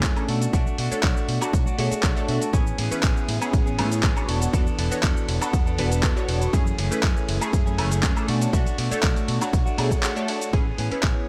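A straight groove drives this sunny, funky filtered disco house excerpt, where a punchy, tape-warm electronic kick sits up front under a gritty, compressed sampler-style soul kit of cabasa, handclaps, hi-hat, ride cymbal and woodblock. A growly fingered electric bass, a clean, direct-recorded electric guitar riff and a warbling, detuned sawtooth polysynth comp with chorus and phaser all pump to the sidechain through a low-pass filter over a Bm7, Amaj9, E7sus4 and F#m9 progression, the whole mix sitting in digital ambience.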